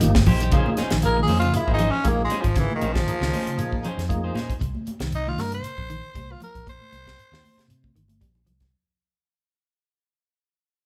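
A tight, dry funk drum kit with a high-tuned snare drives a funky, intense afrobeat groove at 117 BPM in Bb dorian, with a drum fill opening and closing this fading cut, while bright, hard-hit congas and a grainy, very quiet shekere fill in the percussion. A round, dark fingered bass anchors arpeggios and stabs from two slightly broken-up electric guitars, one shimmering with harmonic tremolo, and a full, lightly overdriven tonewheel organ with slow rotary speaker and chorus vibrato comps until 4.4 seconds. Up front, a raspy, gritty tenor saxophone with vibrato takes a punchy solo from 1.1 seconds over a light live-room reverb.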